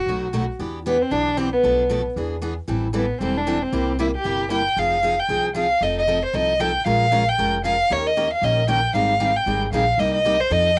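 Fiery and bittersweet, this swinging acoustic jazz manouche passage, cut from a longer piece, sets an expressive, close-miked bowed violin with vibrato, soft attack and portamento over a bright picked steel-string acoustic guitar with audible finger squeak and a woody, thumpy pizzicato upright bass on gut strings, the violin and guitar carrying a cassette-tape character in a small booth-like home room as the music moves into a new section at 4.8 s.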